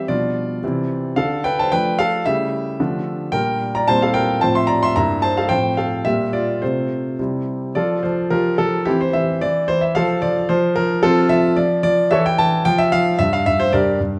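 A solo grand piano opens this graceful, elegant classical-period sonatina excerpt at 111 BPM in a straight 2/4, its intimate, natural tone sitting up front with audible action noise, and the harmony moving through chords such as G7/B, C and Dm before settling into F major from 3.3 s. Spanning G2 to C6, the piano carries a poised first phrase before a contrasting passage begins at 7.8 s, passing through moments of bare, unharmonized line and arriving on Gm at 13.2 s before the excerpt ends at 14.2 s. Close, detailed microphones capture the instrument within a moderate recital hall reverb.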